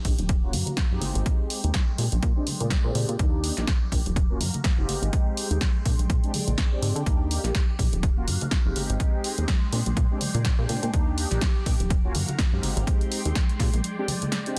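An overdriven electronic kick sits up front in this joyful, sunny slice of filtered disco house, dry and punchy with a firm analog edge, joined by a drum machine whose hi-hat and snare carry the same overdrive and a lightly swung sixteenth-note feel. Underneath, a plucky analog bass blends sawtooth, square and triangle tones with ring modulation, giving a funky, fast-attacking, decaying line that pumps against the kick through a low-pass filter. A mellow synth brass part supplies round, detuned, vibrato-tinged accompaniment, darkened by its filter and colored with chorus, phaser and sidechain pumping. Behind it, a vintage string machine holds swirling, warbling chords with a slow attack, ensemble chorus and a moving notch, while bright tambourine and congas from a live room sit in the background. A filter sweep runs across the whole passage over a repeating cycle of lush major-seventh and thirteenth chords. 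The kick drops out at 13.7 seconds and the bass at 13.8 seconds, leaving the remaining parts to carry on until the cut at 14.6 seconds in a dense, heavily limited, nearly reverb-free mix.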